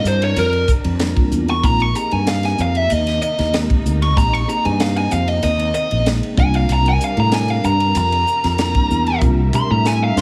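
Electric jazz fusion with a soaring, slick mood, caught mid-piece as a smooth, overdriven, picked lead guitar solos up front over chords moving from C9sus4 to Bb9sus4 and back. A direct fretless bass with subtle chorus sits prominently beneath a mellow, clean tine electric piano with phaser, while a dark, woody symphonic string section sustains lush bowed chords with vibrato in the distant background. A tight funk drum kit, dry and airy with a high-tuned snare, enters at 0.1 seconds and plays a fill from 9.2 seconds, all within a small studio room.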